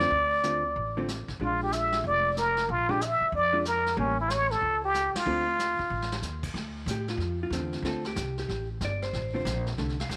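Moody and swinging, this excerpt of small-group jazz in the swing and bop vein moves at a brisk 186 BPM in 4/4 with a swung eighth-note feel in D minor. Up front, a close-miked trumpet with a plunger mute carries the melody, its growling, raspy wah-wah tone shaped by scooped notes, a soft attack and light vibrato, before it falls silent at 6.2 seconds. Beneath it, a clean, picked hollow-body electric guitar comps with a dark, compressed sound, while a pizzicato upright bass gives a woody, thumpy pulse. A vintage kit played with brushes sits mid-forward with dark cymbals, a medium-tuned snare and a punchy kick, its rolled-off top keeping it mellow. The harmony moves from Dm7 through Bb7 to A7b9 and back to Dm7, with a band accent at 5.1 seconds and a short drum fill from 5.9 to 6.2 seconds ahead of a second section carried by guitar, bass and drums. Light reverb and a small-room ambience give the group an intimate, close-up feel.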